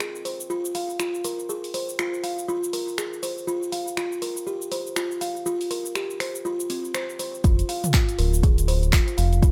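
An earthy, spiritual afro house excerpt opens with a buzzing, woody kalimba playing arpeggios with sidechain pumping and digital delay over a swung deep house kit of finger snaps, handclaps, dark hats, shaker and toms, until a drop at 7.4 seconds brings in a deep, up-front electronic kick and a round analog bass with its own sidechain pumping, all in a light reverb.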